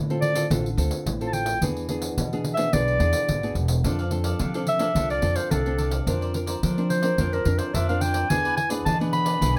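A clear, classical-style clarinet sits up front carrying a lively, yearning melody in this short excerpt of samba and choro at 108 BPM, moving over chords from Dm7 through E7, F6 and Bbadd9/F. Beneath it, a fingerpicked nylon-string guitar with old strings gives a small, woody accompaniment, a pizzicato upright bass adds a growly, thumpy low end, and a jingly pandeiro keeps the percussion from the start. A picked, crisp cavaquinho joins at 3.8 seconds, all captured with close, detailed microphones and light reverb.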